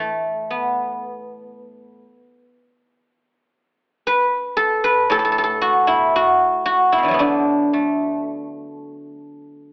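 Serene and elegant, this short cut from a longer piece of traditional Chinese music features a solo guzheng, played with fingerpicks, moving freely in rubato around 58 BPM in 4/4, with the tuning set at A4 = 436 Hz. The guzheng sits up front with a bright, silvery, ringing tone, spanning A2 to B4 across the full 9.7 seconds. A moderate recital-hall reverb surrounds it, while the whole recording carries a telephone-like sound.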